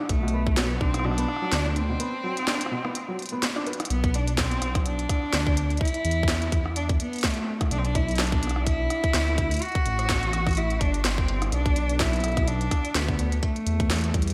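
Bathed in light reverb, this eerie, melancholic IDM excerpt opens with a soft felt-muted upright piano playing gritty, slapback-echoed arpeggios that stop at 3.7 s, while a clear, distant bowed cello carries a smooth vibrato melody through delay over a deep, rumbling detuned saw bass, a tight electronic kick that drops out at 0.9 s and returns at 4.0 s, and a tape-warm glitchy kit of tiny snare, rim clicks and clicky hi-hats.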